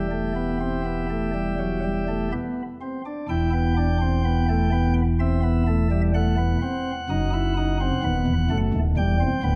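Elegant and lively, this short cut from a baroque-style four-part fugue in E minor moves at 63 BPM in 4/4, with a solo chamber organ playing light, sparkling flute stops that sit up front with a distinct chiff across a span from D1 to G5, tuned to A4 = 442 Hz, as the harmony travels from Em through Am/E and B7/F# back to Em at 9.0 seconds, all set in a resonant recital-hall reverb with a dark production.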